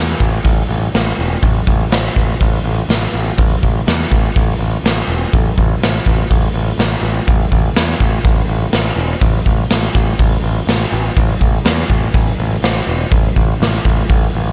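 A straight 4/4 pulse at 123 BPM drives this short psychedelic rock excerpt, its hypnotic, kaleidoscopic mood carried by just bass and drums. A growling picked electric bass opens at 0.0 seconds, bright and overdriven, sitting up front with a direct, amped edge as it works the low register from E1 to E2. The raw garage drum kit enters at 0.2 seconds with hi-hat, a punchy kick and a medium-tuned snare, its sound saturated and gritty with a rolled-off top. The kit breathes in a pumping stone room, while the overall mix carries little reverb and keeps both parts close and immediate. The tuning sits slightly below standard pitch, and the drums stop at 14.2 seconds while the bass carries on to the cut at 14.5 seconds.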